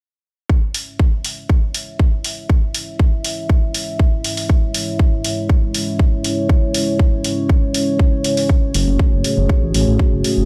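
A punchy, layered electronic kick drum anchors this dark, cinematic slice of melodic techno, sitting up front in a straight 4/4 pulse with a touch of studio reverb. Bright electronic hi-hats join almost at once, while a dark analog pad holds sustained chords throughout, its detuned, wave-folded tone shaded by subtle chorus, sidechain pumping and a slow attack and long release. A filter sweep runs across the pad for the whole passage, lending it a moody, dramatic pull as the harmony sits on C# minor before shifting to F#madd9 at 8.5 seconds. At 8.7 seconds a deep, rumbling saw bass arrives, its detuned, saturated voice beating against itself and pumping with the sidechain. The overall sound is fairly dry and close, with the drums and bass pressed forward in a short cut taken from a longer piece.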